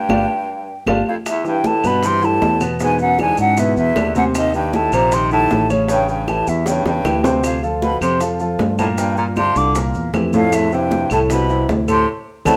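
Afro-Cuban jazz at a lively 155 BPM in straight 4/4, this sophisticated excerpt opens with a band accent before a breathy, hollow-toned flute carries the melody over a baritone saxophone second line full of vibrato and scooped notes, while natural-sounding grand piano and a round, dark fingered electric bass move through chords such as Emadd11, A7, Dm7 and Fmaj7. Bright, high-tuned congas, tight, very quiet bongos and woody, distant claves fill out the percussion, with grainy maracas joining at 1.3 seconds and drum fills arriving around 6.7 seconds and again with the closing accent at 12.1 seconds. The group plays live together in a moderately reverberant stone room.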